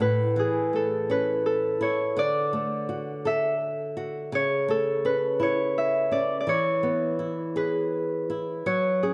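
A rubato lilt in 6/8 carries this tender, gentle lullaby for children, in which an up-front Celtic harp fingerpicks a ringing melody over a fingerpicked flamenco guitar accompaniment with audible finger squeak, both sitting close in a moderate concert-hall reverb as the chords move from A through Dadd9 and A/C# to E in this brief cut from a longer piece.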